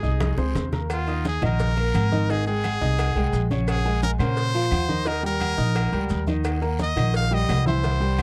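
A brilliant, punchy trumpet leads from the first moment over an open concert grand piano, an up-front pizzicato upright bass with a woody tone, and bright congas, with guiro and maracas faint underneath, in this festive, sunny salsa excerpt at 173 BPM. A drum fill at 0.2 seconds brings in tight bongos and cowbell, ringing timbales and agogo bells, and very quiet claves, all set back in the mix. The trumpet's forceful, vibrato-laden pop-style solo rides over chords moving from Ab through Ebsus2, Abmaj7 and Bbm7 to Eb, captured in a dry, close 1970s-style studio sound.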